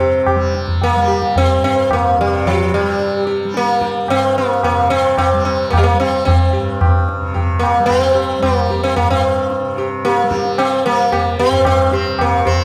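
Hindustani classical music in a longing, meditative mood moves at 111 BPM in 3/4, with an up-front, round sitar carrying the melody between F3 and G4, its plectrum-plucked tone buzzing with sympathetic strings, over a bright, softly plucked tanpura drone from the very start and low-tuned, short-ringing tabla entering at 0.3 seconds, all set in a moderate recital hall reverb in this brief 12.6-second cut from a longer piece.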